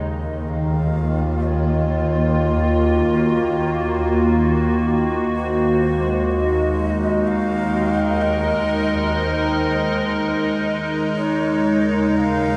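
In free time, this reflective, melancholic ambient excerpt in Eb dorian rests on an up-front, detuned wavetable pad that warbles and morphs through Ebmadd9, Ab7/Eb and Db/Eb. Beneath it, a distant, bowed double bass section holds a low Eb, while a resonant drone with moving overtones enters at 0.1 s. A breathy, end-blown shakuhachi melody sits in the background, gradually fading in as the bass fades out, all soaked in a lush hall reverb.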